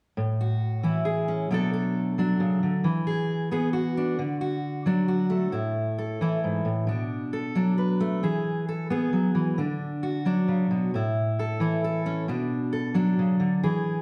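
A straight feel in 3/4 at 134 BPM carries this short folk excerpt in A major, its mood nostalgic and hopeful. A single fingerpicked steel-string acoustic guitar plays solo from 0.2 to 14.0 seconds, ranging from G#2 up to B4, with a warm, auditorium-sized body that sits up front in the mix. The opening passage moves through Amaj7, Bm7, E7 and D, and at 5.5 seconds a second passage begins that cycles through A5, Bm7, E and D before settling back onto A and Bm7. A moderate, large studio reverb with a 1.3-second decay gives the guitar a sense of open space around it.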